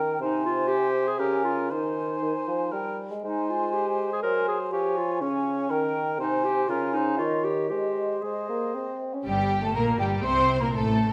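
A moderate recital-hall reverb gives this short cut from a quick classical-period orchestral movement a natural, rounded space, its urgent, dramatic mood set in Ab major at 120 BPM in a straight 3/4. The opening belongs to the woodwinds: a hollow, pure-toned flute section with vibrato carries a second line high above, joined by a close-miked cor anglais with light vibrato, an up-front clarinet, and a dark, smooth-topped bassoon supplying accompaniment underneath. Their harmony moves briskly through chords such as Ab/C, Bbm7/Db, Ab7/Gb and Eb7 before settling on Ab around 7.7 seconds. At 9.2 seconds the strings and horns take over, with a bowed viola section, an intense cello section on the bass, and a background French horn section holding mellow sustained chords, and the harmony turns to Gm at 9.3 seconds. From 9.3 seconds a distant, focused violin section carries the melody, shadowed by a lush second violin section in the background, with a chamber double bass section deep beneath, while the flutes continue to the cut at 11.1 seconds.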